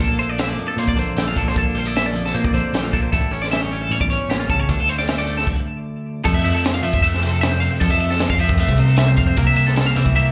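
A math rock and midwest emo fragment at 154 BPM in 4/4, intricate and wistful, cut from a longer piece and heard as a live gig through the venue's PA with club reverb. Two bright, twangy twelve-string electric guitars ring out clean and compressed. One plays accompaniment in the lower register with slapback echo, while the other spins arpeggios from F4 to F5, coloured by subtle chorus and tape echo. A picked electric bass sits underneath with an amped, warm tone, and a crisp fusion drum kit, up front and gritty, drives the music with a high-tuned snare, tight kick, hi-hat, ride and crash in a small, pumping room. The harmony moves from Bbmaj7 through A7 to Dm7, then a stop between 5.5 and 6.2 seconds opens a new section that shifts to Fmaj7 and lands on C7.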